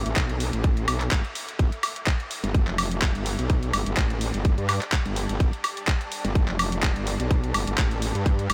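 Aggressive and swaggering, this short bass house passage is cut from a longer piece and rides a 4/4 groove with a light swing on the sixteenths, tuned to A4 = 444 Hz. Up front, a metallic wobble bass snarls between F1 and G2, its FM tone given a fast attack, long sustain and a saturated, compressed bite thickened by chorus and tube saturation, while sidechain pumping makes it breathe against the beat. A layered garage kit of handclaps, bright hi-hats and woodblock enters at 0.1 seconds, and a tight electronic kick, loudest in the mix, joins it at 0.2 seconds. Far behind them, a granular cloud pad fades in across the whole clip, a blurred, detuned and mellow haze that drifts between G4 and A5 with a slow attack, long release, its own reverb and subtle chorus, also pumping with the sidechain. The harmony moves from A5 to G5 at 1.6 seconds, and a light reverb lends the produced mix a touch of space.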